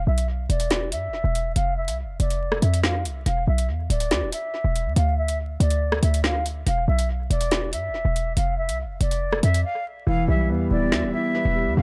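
A half-time drill groove of metallic hats, rim clicks and a woody snare sits under a punchy, tight 808-style bass as a distant, straight-toned concert flute carries a cold, menacing hip hop melody through a filter sweep, tape echo and vinyl crackle, until a break at 9.6 seconds gives way to a dark, mellow baby grand piano at 10.1 seconds, the hats falling silent there, and a soft, breathy pad joins in the background at 10.6 seconds.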